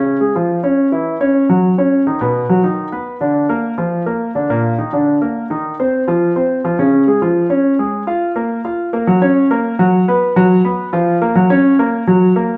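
A straight, driving 4/4 at 210 BPM carries this fiery jazz fragment, cut from a longer piece and tuned to A4 = 436 Hz, with a solo grand piano playing throughout its 12.6 seconds, spanning Bb2 to F5. The piano sits up front, warm and present with long sustain, its harmony moving from Db through B, Bb and Eb5 before a shift at 9.1 s into suspended Gb and F colours that settle on Gb. A wet stone-room reverb of 1.2 s and a live, single-room recording give the playing a resonant, lively space.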